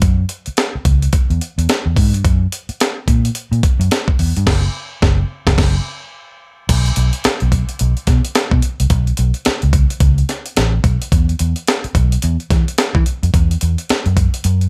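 Funk at 108 BPM with a playful, swung sixteenth-note feel, this short cut pairs a dark, round, foam-muted fingered electric bass with a gritty, compressed sampler-style breakbeat kit of thumpy kick, high-tuned snare, hi-hat and crash, both placed up front in a dry room, with a band accent from 4.5 to 6.7 seconds leading into a new section.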